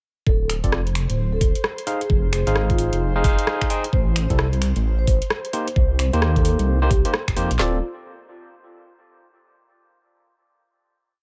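A late-night, bouncy two-step UK garage piece with a swung 4/4 groove, running as one short groove before settling on a held final chord at 7.6 seconds. A dark detuned saw bass sits up front with a deep, rumbling, saturated tone, playing a skipping syncopated line under a two-step kit of knocking kick, woody snare and handclaps. A second layer of the garage kit adds metallic closed and half-open hats, finger snaps and rim clicks in a skipping swung pattern, both kit layers carrying a small-room, re-recorded character. An overdriven tine electric piano, barky and bright through a combo amp, fires syncopated chord stabs in one shape moved in parallel over Dm7, Fm7, Am and Cm7, filtered and trailed by dub echo. In the background, a vibraphone with soft mallets repeats a mellow, ringing riff with fast motor vibrato, roughened by vintage 12-bit sampler grit and dub echo. A very quiet, airy, breathy pad holds a single high note throughout, and the mix stays dry and close overall.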